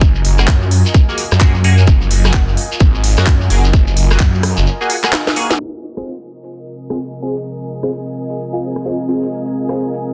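Gritty and aggressive, this swung bass house fragment pairs a tight, up-front electronic kick and a thick, swirling phased saw bass with a garage kit of cracking snare and crisp hats, a grainy shekere, nasal band-passed chord stabs under a filter sweep, and an ethereal airy pad, until a break at 4.7 seconds and a drum fill lead into a deep, moody, warbling dark pad that enters at 6.7 seconds.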